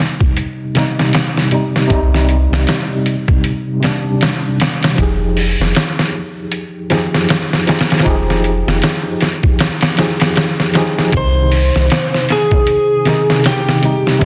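A dense, heavily limited modern master with vinyl crackle and light digital ambience frames this hypnotic, cinematic trip hop excerpt, cut from a longer piece and swung on the sixteenths. A worn, slightly out-of-tune tine electric piano carries the accompaniment from the start, lightly overdriven through built-in speakers and treated with tremolo and tape echo as the harmony moves from C minor to F minor ninth and back. Up front, a gritty, pitched-down sampler-style drum kit supplies a thumpy kick, a medium-tuned snare with soft clipping and studio reverb, and hi-hat, all compressed and tape-warm. A deep, round, soft dub sub bass joins at 1.9 seconds with a sustained, fast-attack tone, and the kick drops out between 9.6 and 11.1 seconds. At 11.2 seconds a dark, slightly broken-up electric slide guitar takes the melody up front, fingered and compressed with tape echo.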